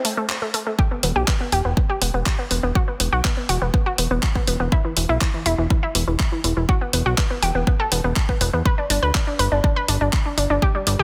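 A round, nasal analog pluck plays arpeggios from E3 to B4 throughout this dreamy, expansive progressive house piece at 122 BPM in E minor, colored by chorus, delay, 12-bit sampler grit and sidechain pumping. A house drum kit of handclaps and hi-hat, with soft clipping on the snare, joins it from the start, before a punchy, tape-warm electronic kick arrives at 0.8 s and a fat, detuned sawtooth bass with its own sidechain pumping follows at 1.0 s. The chords move from A5 to E5 and reach G5 at 8.7 s, all in light reverb with a dense, heavily limited modern master.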